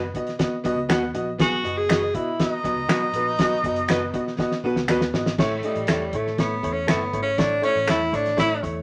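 A breathy, up-front tenor saxophone carries this uplifting, joyful 1960s-style soul excerpt at 120 BPM, its subtone melody full of vibrato and scooped notes, and it takes a solo at 5.4 s once the cloth-damped drum kit plays a fill with its fat snare, tight kick and dark cymbals. Underneath, a woody upright piano with audible action noise and a round, punchy, foam-muted picked electric bass hold down the harmony as it moves from B to A. A slightly broken-up, lo-fi electric guitar adds stabs in the background alongside close, dry finger snaps, all set in moderate studio reverb.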